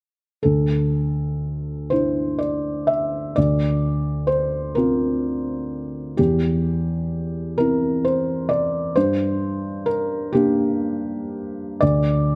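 This neoclassical minimalist piece for solo piano feels intimate and reflective, moving in a slow, unhurried 6/8 with uneven beats and generous rubato. A felt-muted upright piano plays alone from 0.4 seconds to the end of this short fragment of a longer work, its tone soft, mellow and dark through thick felt, reaching from deep bass notes up into the middle-high register. The harmony drifts from Dsus2 to Bbadd9 over D, then to C over E and on to G minor, before the chords fall away at 11.8 seconds. Close, detailed microphones keep the piano up front, so each muted note sounds near and personal. A light reverb adds a faint sense of space around the instrument.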